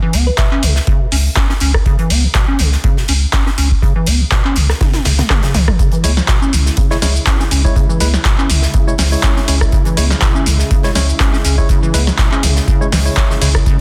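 A squelchy, resonant square-wave acid bass riff drives this gritty acid house excerpt in C# minor at 122 BPM, its filter sweeping through tube saturation, subtle chorus, tape echo and sidechain pumping. Beneath it a round sine sub bass holds a low C# with a pumping pulse, while an electronic kick drum, deep and re-recorded in a large room, anchors the 4/4 groove with a light 16th-note swing. An analog drum machine adds a punchy snare, metallic hats, handclaps, cabasa, rim clicks and toms, and a drum fill arrives at 4.8 seconds. A polished acoustic studio kit sits lower in the mix, its airy hats and medium-tuned snare thinned by high-pass filtering. A tine-like FM pluck with phaser and chorus flickers gently in the background only at the very start. At 6.0 seconds a lush, detuned sawtooth unison pad and dark, hollow organ stabs with tape echo join to thicken the dense, heavily limited and fairly dry sound.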